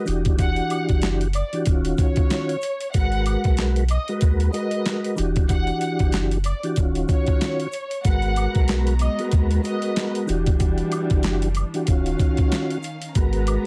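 A smooth tonewheel organ with key click and slow rotary chorus opens this tough, reflective boom-bap hip-hop cut in G# minor at 94 BPM with a 16th-note swing. A round sine sub bass and an up-front, gritty sampler-style kit of thumpy kick, medium-tuned snare, hi-hat and handclaps join it, along with a background tube shaker and woodblock. A lush violin section with delay carries the melody from 0.4 to 10.1 seconds over Em9, D#m9 and G#m9 chords, and an intimate sul tasto string section adds sustained chords from 8.1 seconds, all in a dry, dense, heavily limited master dusted with vinyl crackle.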